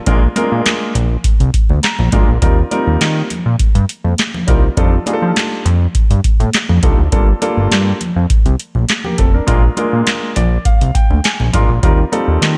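A straight, danceable pulse from a booming, dry analog drum machine, with a deep kick, crisp snare, metallic hats and handclaps, drives this slick early-eighties boogie funk excerpt. Up front with the drums sits a fat, detuned sawtooth bass with a wave-folded edge and a filter sweep, while a warm grand piano accompanies through jazzy chords like Bb7 and Gm9 and adds fills at 1.5 and 10.1 seconds. Bright, high-tuned congas with hard hands sit distant in the background of a large room, and the whole mix carries light reverb.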